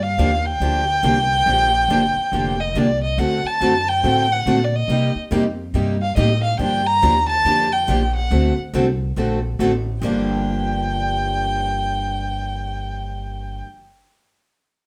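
A swung 4/4 at 140 BPM drives this fiery acoustic string swing in G minor, a cut from a longer piece, with the band playing live together in one room under moderate studio reverb. Up front, a single bowed violin carries the melody with a dark, boxy tone and light vibrato, while a thumpy, gut-strung upright bass plucks pizzicato beneath it. Two picked parlour guitars, one plugged-in and warm and the other bright with fresh strings and audible finger squeak, comp through Gm7, D7 and Cm7 changes from 0.2 seconds, with a new section arriving at 10.0 seconds back on Gm7.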